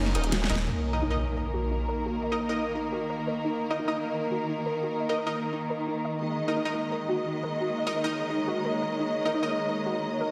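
Mechanical and futuristic, this dark technical drum and bass moves at 173 BPM in a straight 4/4, opening with a growling, snarling distorted saw bass, a formant-sweep wobble bass and a dubstep drum kit with a huge snare and metallic hats, all three up front and gone after a drum fill by 0.7 seconds. An electronic impact then lands at 0.7 seconds. Veiled, con sordino strings hold sustained chords, an ethereal, airy pad adds texture, bold, punchy orchestra-hit-like stabs ring with reverb and delay, and a soft, round pluck plays arpeggios in the background under a filter sweep, all inside a lush hall reverb and a dense, heavily limited master.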